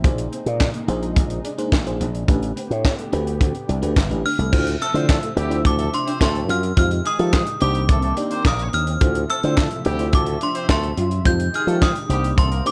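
A growly slap bass run through an envelope filter sits up front with a punchy, tight funk drum kit of kick, high-tuned snare, hi-hat, handclaps and crash cymbal, giving this slick, funky early-eighties boogie funk excerpt its drive. Underneath, a chorused FM electric piano with a soft pad layer glows dreamily in the background, while a thick, warbling unison pad and a dark, clean electric guitar riff sit very quiet in a small, dark-sounding room. At 4.3 seconds a metallic, inharmonic FM bell rings out the melody with chorus and slapback echo, and a clear horn section with light vibrato adds a second line from 4.8 seconds as the suspended harmony opens into minor ninth chords.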